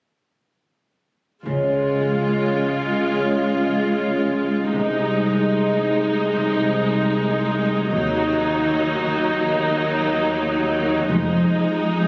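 Opening at 1.4 seconds with a rich, up-front viola section bowing lush, vibrato-laden accompaniment, this uplifting, tender cinematic score in Db major moves at a rubato 74 BPM as a ringing, fingerpicked concert harp adds arpeggios, a dark, woody cello section supplies soft-attack bass, and a smooth double bass section sits in the background, all through a Db, Ab/C, Ebm, Fm7 progression in light reverb with the roomy sound of a phone recording.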